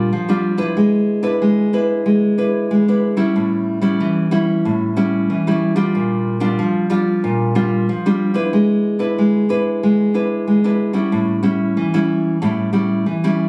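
Samba at 93 BPM in a lively, yearning mood, this 13.5-second excerpt features a solo fingerpicked nylon-string guitar, full-bodied and classical in tone, sitting up front with light reverb as it cycles through a rootless Bb6, E7/G# and A7 twice across a range from A2 to B4, captured on a phone in a room with club reverb and compression.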